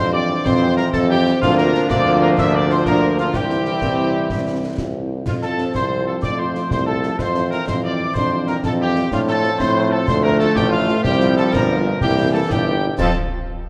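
A clear, up-front tuba drives the bass of this rousing, spirited military-style march for wind band in 6/8, while a tight trumpet section with light vibrato carries the melody and a pure piccolo and a mellow euphonium in the background add second lines above and below it. A trombone section holds sustained chords, a very quiet French horn section fills in the accompaniment, and concert snare drum, bass drum and clash cymbals with dark cymbals enter at 0.5 seconds. Set in a reverberant concert hall with a dark, warm production, the passage is cut from a longer piece and closes on an open F5 chord at 13.0 seconds.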